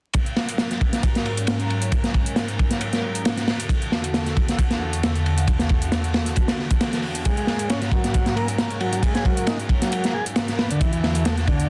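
A crunchy breakbeat drum kit leads this raw, funky breaks excerpt, its gritty, saturated sound sitting up front with a tight kick, a medium-tuned snare, dark cymbals and a rolled-off top that keeps the kit smooth despite the grit. An overdriven electronic hi-hat with a metallic edge rides underneath the kit, adding a layered, produced shimmer to the swung sixteenths. A phased analog pad enters at 0.6 seconds with swirling, detuned sawtooth chords that warble and evolve under phaser and chorus, pumping against the beat as it moves between suspended ninth harmonies. At 7.3 seconds a vintage combo organ comes in with a reedy riff drenched in heavy vibrato, its clean tone echoed by a digital delay. The whole is set in a moderate studio room and pressed into a dense, heavily limited modern master flecked with vinyl crackle.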